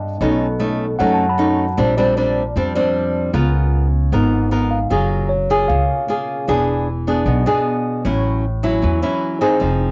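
Bossa nova with a sophisticated, romantic mood, this short cut from a longer piece moves in a straight 4/4 feel over a rich run of extended chords, from B9 and Bb69 through F#maj9 to a closing A6. A bright, full-bodied nylon-string guitar sits up front, fingerpicked in a classical manner across the whole passage with a cassette-tape coloring. Beneath it, a pizzicato upright bass with steel strings gives a woody, thumpy foundation. A worn, slightly out-of-tune tine electric piano, lightly overdriven through a combo amp and colored by tape, adds a warm upper-register accompaniment before dropping out at 6.6 seconds and returning briefly at 9.6 seconds. Light reverb and the homespun cassette sound lend the whole recording an intimate, lived-in character.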